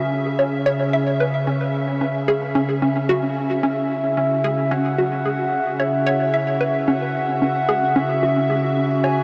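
A breathy, flute-like synth lead enters at 3.6 seconds with a soft, vibrato-touched melody over a hollow, bouncy square pluck riff and an evolving, warbling wavetable pad holding a single minor chord, all bathed in shimmer reverb and a huge ambient space in this mysterious, expansive excerpt of sequencer-driven space music.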